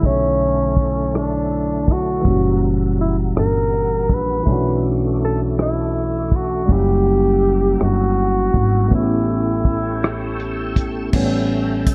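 Sultry and yearning, this slow six-eight R&B excerpt in B minor moves at 54 BPM, with a breathy, whispered tenor saxophone carrying the melody in an intimate subtone, scooping into notes with vibrato until it drops out at 10.4 seconds. Beneath it, a barky, lightly overdriven tine electric piano with phaser plays the accompaniment, a tonewheel organ with chorus vibrato and slow rotary speaker holds sustained chords in the background, a woody pizzicato upright bass thumps up front, and a dry, dark soul drum kit with a tight kick sets the pulse with hi-hat, rim click and crash. The chords cycle between Bm11 and F#7b9 before landing on A7, all within a small, lightly reverberant room under a filter sweep.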